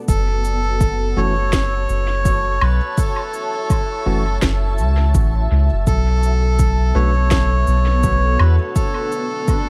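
Vinyl crackle rides over light reverb and a digital ambience in this hazy, spacious ambient dub passage, cut from a longer piece and moving at 83 BPM in 4/4 with a swung sixteenth feel in F# minor. A cloudy, detuned granular pad holds slow-blooming sustained chords in its own built-in reverb, shifting from F#m7 to Bm7 at 5.9 seconds. Up front, a soft, round sub bass anchors the low end beneath a deep, layered electronic kick and a tape-softened kit of shaker, woody snare and woodblock, both re-recorded in a small room, with the lighter percussion trailing dub echo. A reedy, breathy melodica carries the melody through dub echo of its own. In the background, a gritty, overdriven tine electric piano heard through a combo amp adds echoing stabs from 1.2 to 7.1 seconds.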